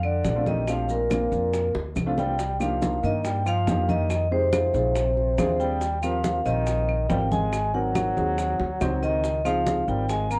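A straight 4/4 groove at 140 BPM drives this sunny, lively Afro-Cuban jazz excerpt in Bb major, where a dark, ringing vibraphone carries the melody through plate reverb over a brilliant, distant trombone second line with vibrato and scooped notes, a thumpy, woody pizzicato upright bass with gut strings up front, and a warm, intimate baby grand piano entering at 0.4 s with audible action noise, while low-tuned congas, round bongos and vintage band-limited claves sit in the background alongside grainy maracas, drum fills arrive at 1.7 s and 8.6 s, and the whole recording wears a worn, warbling cassette-tape pitch drift.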